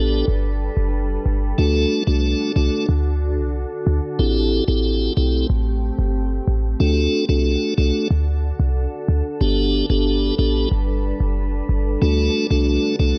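A dry, gritty recording with transformer saturation frames this bouncy, sunny dancehall excerpt at 92 BPM in D mixolydian, its straight 4/4 moving through Gadd9, D and Am7. Up front, a piping, scooped tonewheel organ with key click, light overdrive and a slow rotary speaker carries the accompaniment, while a deep, boomy 808-style bass with a fast attack and dark, decaying sine tone sits equally forward. Behind them, a glassy, ethereal FM pad holds mellow sustained chords with a slow attack, long release, ensemble chorus and its own reverb across the full 13.2 seconds.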